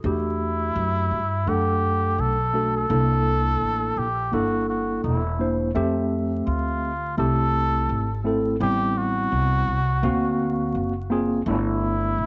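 Cool and smoky, this jazz-hop excerpt moves at a relaxed 84 BPM in 4/4, with a gentle swing on the sixteenth notes. A worn, slightly out-of-tune tine electric piano carries the chords up front, its clean tone heard through its built-in speakers as it moves from Em11 through C13, Fmaj7 and Am9 to a D7alt that resolves onto G69. Beneath it, a pizzicato upright bass with gut strings sits low and present, sounding woody, dark and thumpy. A cup-muted trumpet takes the soloing melody from 0.1 seconds in a soft, veiled jazz voice, adding vibrato and scooped notes within a narrow range and keeping a smooth top to its warm tone. Light small-room reverb and a haze of vinyl crackle give the short passage a dusty, close, lo-fi finish, with the sound rolled off above 7.9 kHz.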